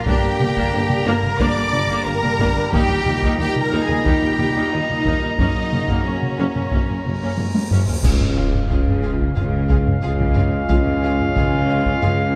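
Straight 4/4 taiko ensemble drumming with heavy sticks drives this adventurous, heroic epic orchestral film cue, where very quiet, lush violins carry the melody over a second violin line, background violas, clear cellos, rich double basses and a mellow tuba hold the low end, warm French horns and trombones sustain chords beneath distant trumpet stabs, and dark, dry clash cymbals with concert bass drum enter at 5.4 s before a drum fill and a huge, bright cymbal swell build to an impact at 8.0 s, set in a moderate scoring-stage reverb.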